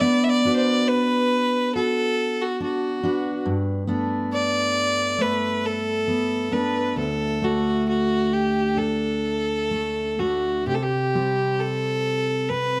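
Celtic slow air in G major, nostalgic and tender, drifting in rubato 4/4 at around 62-72 BPM, where a single rich, bowed fiddle with light vibrato and a smooth, even top carries the melody up front over a full-bodied, fingerpicked steel-string dreadnought guitar moving through Bm, Gadd9, D and C5, all captured with close, detailed microphones, light reverb and tuning at A4 = 439 Hz in this 12.8-second excerpt from a longer piece.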